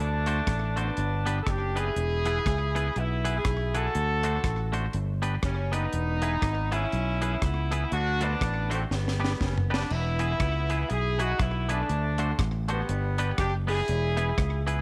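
A clear horn section with light vibrato carries the melody in this cheerful, upbeat ska excerpt, swinging over a repeating D7, G and E progression. A round, dark fingered electric bass sits up front, while a clean, compressed semi-hollow guitar and a dry reggae drum kit, with its high-tuned snare, tight kick, rim clicks, hi-hat, toms and crash, both carry a slapback echo. A drum fill at 8.9 seconds leads into the repeat of the opening section, all set in a light reverb.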